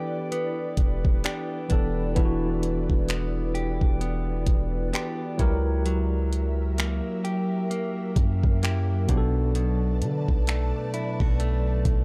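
A dry, gritty recording with transformer saturation frames this moody, late-night contemporary R&B piece, cut from a longer work, in E minor at 65 BPM with a swung 16th feel, moving from Em7 through F#7b9 to Bm7. A clean tine electric piano and a compressed, direct-recorded electric guitar picking arpeggios through tape echo sound from the start alongside an ethereal, detuned pad that carries ensemble chorus and its own reverb. Electronic drums with a knocking kick, metallic hats and finger snaps sit up front from 0.3 seconds, joined at 0.8 seconds by a deep, sine-toned 808-style bass with long, decaying notes.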